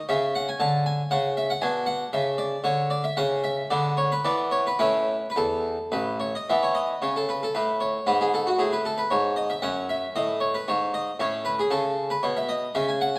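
A solo harpsichord of the Italian type, plucked and full with its two sets of strings, sits up front and mid-forward, ranging from A1 to A5 across this 13.2-second excerpt of a baroque-style suite movement. The music is dance-like and flowing in triple metre with a rubato feel. The opening section returns at 6.5 s and passes through chords such as B7sus2/G# and F#m before closing on Aadd9(#11), all carried by a moderate recital hall reverb that gives the instrument a natural sense of space.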